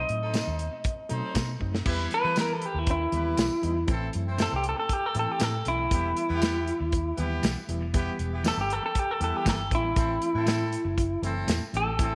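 This straight-eighth soul blues excerpt at 118 BPM in 4/4 has a mournful, soulful mood, set in E harmonic minor with tuning at A4 = 445 Hz. An electric guitar through a small old amp carries the melody up front, its tone dark, slightly broken-up and lo-fi, with spring reverb. Beneath it, a gritty, overdriven reed electric piano adds accompaniment with fast tremolo, while a brilliant horn section holds sustained chords with light vibrato. A round, punchy foam-muted electric bass and an acoustic soul drum kit with tight kick, dark cymbals and tambourine anchor the groove, and a very quiet clean electric guitar plays stabs. After a drum fill at 1.6 s, the harmony moves from B7b9 to Em at 1.9 s, where a clean electric guitar solo begins and runs to the end, over chords alternating between Em and Am, all set in a small room with light reverb.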